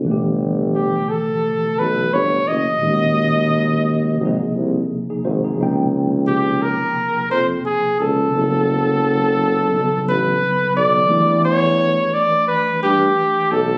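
R&B with a neo-soul lean, this smooth, introspective excerpt rides a gently swung groove as a mellow, clean tine electric piano comps through the chords, heard as if through its built-in speakers, and a tuba carries the bass with light vibrato and scooped notes, sounding distant and roomy in a jazz manner. From 0.8 seconds a flugelhorn takes the melody up front, punchy and pop-styled with vibrato, over harmony that moves from G through D#m7 and C#maj7 to a shift toward Em7 at 11.1 seconds. The sound has a moderate studio ambience with reverb and compression, captured on a phone in the room.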